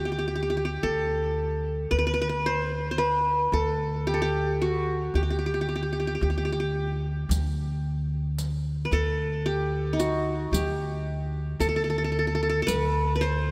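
A dreamy mix soaked in a lush hall reverb sets this stately, warm Turkish makam ensemble passage in a spacious glow, cut from a longer piece. The qanun carries the melody up front, its plectrum-plucked triple strings sounding bright-edged and trailed by a diffuse ambient delay as the line moves between Eb4 and C5 in D makam hicaz, tuned to A4 = 444 Hz. Beneath it, an upright bass plays pizzicato on steel strings, holding a woody, close presence on a low D throughout. The music moves in 10/8 at 112 beats per minute counted in eighths, with a straight feel. At 7.3 s a riq joins quietly in its own live room, adding the sparkle of its jingles behind the qanun and bass.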